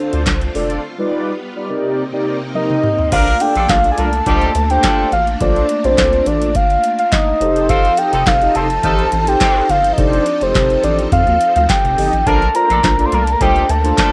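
Early-eighties boogie funk at 105 BPM with a late-night, funky mood, where a booming analog drum machine with a deep kick, tonal snare and metallic hats drives a rubbery, hollow square bass under mellow, brassy synth chords and a shimmering string machine, before a drum fill at 2.5 seconds brings in a soft, round octave-layered synth lead up front and a clear horn section from 3.1 seconds, all with the character of a cassette home recording.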